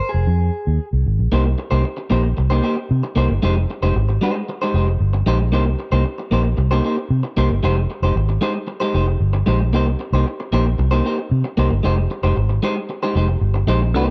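Disco at 114 BPM in a celebratory, joyful mood, this short excerpt from a longer piece opens with a clean electric guitar solo for its first 1.3 seconds before settling into a groove that alternates Fm and Cm7 colours, with Fm9 and Cm7 trading every couple of seconds. A slightly broken-up, picked electric guitar sits up front with compression and spring reverb, playing accompaniment from Ab3 to C5, while a dark, foam-muted fingered electric bass delivers round, punchy lines from F1 to C3, louder in the mix. The sound is dry and close, in the manner of a 1970s studio recording.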